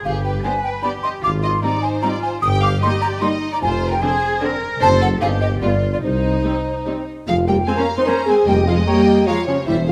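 A moderate concert-hall reverb gives this playful, whimsical film cue in 3/4 a rounded glow, with a hollow, airy flute carrying a second line over mellow French horn chords. Beneath it sits a sul tasto string body: a clear, floating violin section on a second line, a more intimate violin melody tucked into the background, a distant viola accompaniment, and close cello and double bass sections joined by a soft-attack tuba in the bass. The mood is quirky and mischievous, and from 7.7 s a smooth clarinet and a present cor anglais, both set back in the mix, add brief second lines before stopping at 9.4 s.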